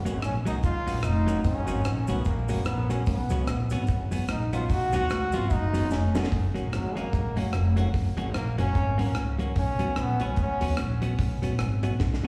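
Upbeat and joyful, this ska excerpt swings along at 148 BPM in F# major, with a bright, present trombone carrying the solo melody from 0.2 s to 10.8 s, touched with light vibrato and dressed in dub and slapback echo. Beneath it, a woody, growly upright bass sits up front, a clean, picked electric guitar with slapback echo fills in the chords, and a dark, dry reggae drum kit with a high-tuned snare and tight kick marks each half with a fill, the second at 12.0 s. A grainy cabasa adds texture in the background until 6.2 s, and the whole performance carries the light reverb and hall ambience of a live gig heard through the venue's PA.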